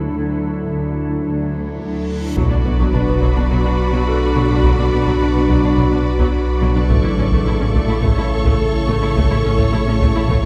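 Heard from further back in a wet recital hall, this brooding, vast cue from a hybrid orchestral and electronic film score moves at 106 BPM in a straight 4/4, in B minor. It opens on a glassy FM pad with ensemble chorus and its own reverb, a cello section holding the bass in the background, and a very quiet, boxy grand piano adding texture over a Dadd9 chord. At 2.1 seconds a huge, bright reverse cymbal and sub drop arrives. At 2.4 seconds the harmony turns to B minor as the full orchestra enters: a lush violin section carrying a second line up high, an intense viola section in accompaniment, and a mellow French horn section, close-miked and tight, holding chords in the background. Underneath, a deep, round sine sub bass sits alongside a very quiet double bass section, while a taiko ensemble struck with heavy sticks sounds from a live room, low in the mix. The chords move on to A before the passage cuts off, lifted from a longer piece.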